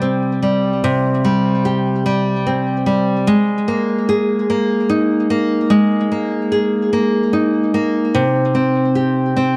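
A solo nylon-string guitar, bright and full-bodied, is fingerpicked up front in a classical style through tape echo and light reverb, carrying this dramatic, melancholic pop excerpt in C minor at 49 BPM in 6/8, moving from C5 to Absus2 at 3.3 seconds and settling on Cm at 8.1 seconds within a dark, warm production.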